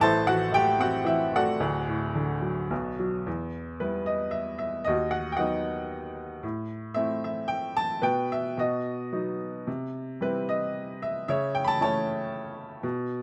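Classical solo piano in a moody, brooding vein, this 13.2-second excerpt from a longer piece features a bright, woody upright piano sitting up front with close, detailed presence and light reverb, played with lyrical rubato in 3/4 at 112 BPM, settling into E harmonic minor from 3.3 s through chords such as Em, B/D# and Am, spanning D1 to B5.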